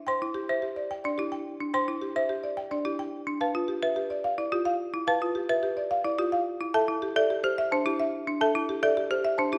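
This hypnotic, propulsive fragment of minimalist classical pattern music opens at once with three parts together. A buzzing marimba played with medium mallets carries the melody, while a rustic, bright folk marimba struck with hard mallets plays arpeggios in a lower register and a small celesta adds delicate, bell-like arpeggios higher up. In triple metre the harmony moves from C to G9 at 3.4 seconds and to D9sus4 at 6.7 seconds, with the two woody marimbas up front and the sweet celesta softer behind them, all set in a recital hall's reverb.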